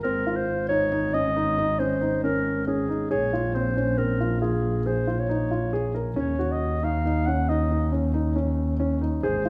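Pensive yet urgent, this contemporary chamber piece moves at 137 BPM in an uneven 7/4 with a straight feel, set in Eb dorian and cut from a longer work. A dark, smooth-topped solo clarinet carries the melody in a classical style with soft attacks. A mellow, intimate baby grand plays short-sustained arpeggios with audible action noise, while a single bowed double bass adds a woody bass line with vibrato. The three sit up front in a church or concert hall, wrapped in a wet recital-hall reverb, as the harmony moves from Dbmaj7(no3)/Ab through Bbm7 to Ebm7.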